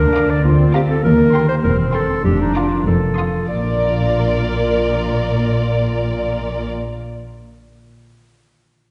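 Playful and mischievous, this short cinematic fragment moves at 99 BPM in a straight 2/4 and sits in Bb major, cut from a longer piece. A close-miked clarinet with a clear, classical tone sits up front on a second line, while the concert harp rings out thumb-plucked arpeggios in the background and is the last part heard, lasting until 7.5 seconds. The dark violin section carries the melody from 0.2 seconds with vibrato, soft attacks and expressive portamento, and a smooth, even violin section adds another line beneath it. Woody, distant violas fill in the accompaniment, and lush cellos and symphonic double basses hold the bass with expressive bowing. The harmony passes from Bb/D through Cm7/Eb, C7/E, Bb/F and F7 before settling on Bb at 3.5 seconds, all heard from further back in a reverberant concert hall with a softened top end.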